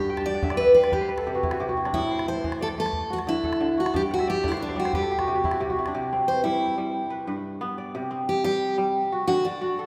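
Hypnotic and flowing, this short cut from a longer West African traditional piece moves in a straight 12/8 at 120 dotted-quarter beats per minute, centred on C lydian. A picked steel-string acoustic guitar with a bright, full-bodied jumbo tone and audible finger squeak carries the melody up front. Beside it, a fingerpicked kora spins ringing, crisp arpeggios across a broad range and adds short fills during the first section. A small calabash sits close and dry underneath, playing percussion until 5.9 seconds, when the guitar moves into a solo over chords of C, G and D. The whole recording is bathed in the long, lush reverb of a church or concert hall.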